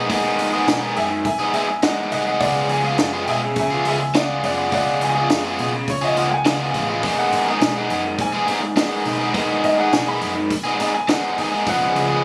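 A bright, overdriven, double-tracked electric guitar riff sits up front in this jangly, upbeat indie rock excerpt, while a woody upright piano with audible action noise and long sustain takes the solo melody from 0.9 seconds over a dark, round hollow-body short-scale bass and a dry compact cocktail drum kit with a high-tuned snare and punchy kick, captured on a phone in a studio room with moderate reverb.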